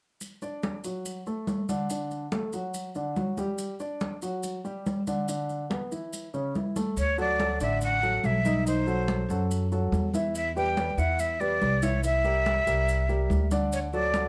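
This Afro-Cuban jazz piece in D major moves at a lively, sunny 142 BPM in a straight 4/4, heard as a passage cut from a longer performance. Ringing, high-tuned congas with a vintage, band-limited tone and grainy, mellow maracas start at 0.2 seconds, and a woody, polished upright piano joins at 0.4 seconds, placed up front as it comps through changes built on D, G, E and A. At 7.0 seconds the music shifts into a second section as a breathy metal flute takes the melody, expressive with vibrato, a soft attack and lifted highs, set up front in a plate reverb. An upright bass enters at the same point, plucked pizzicato on steel strings with a dark, up-front sound. This later stretch brings richer harmony, moving through Dadd9, B7b9, Em7 and C9 before settling back on D, all sitting in a moderate small room.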